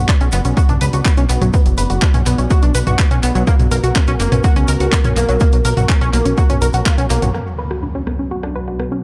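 Dramatic and driving, this melodic techno excerpt runs at 124 BPM in B harmonic minor, moving from Bm to F# and back, with a punchy, overdriven electronic kick up front alongside a layered deep house kit of handclaps, hi-hat, rim click and toms dulled by low-pass filtering and tape echo, plus a grainy tube shaker in the background. A plucky, funky analog bass with ring-modulated sawtooth bite pumps with sidechain compression, while a tight, detuned sequenced synth spins arpeggios through chorus, phaser, cassette tape and tape echo over a deep, moody pad sitting low in the mix. At 7.3 seconds an up-front impact hits as a filter sweep moves across the arpeggio, and from 7.8 seconds an evolving, pulse-width-modulated analog drone joins, all within a light digital ambience and an echo-heavy mix.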